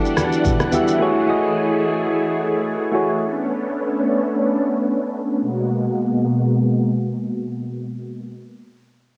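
A shimmering, vintage string machine carries sustained violin chords through the whole 8.4 seconds of this deep, late-night amapiano excerpt, its sawtooth tone given ensemble chorus, sidechain pumping, a low-pass filter and cassette-tape grit. Round, mellow electric-piano-like synth keys with chorus play accompaniment until 3.2 seconds, while a deep house kit of deep kick, rim click and shaker and soft-handed, low-tuned congas appear only briefly near the start. A filter sweep runs through the opening section as the chords move from Em9 through F#m9 and Bm9 to G#m9, all with light reverb and the hazy feel of a home cassette recording.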